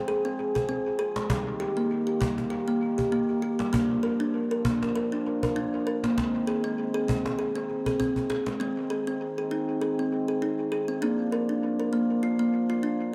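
A lightly swung 4/4 pulse at 99 BPM carries this dreamy, calm world meditative fragment in Ab lydian, where a bright, thumbnail-plucked kalimba sits up front spinning woody arpeggios soaked in dub echo, a distant, hard-handed cajon with faint snares keeps time from 0.4 s until a drum fill closes its part at 8.6 s, and a mellow French horn section with light vibrato holds sustained chords moving through Fm, Eb, Bb and Ab, all bathed in moderate spring reverb and small room ambience for an echo-heavy sound.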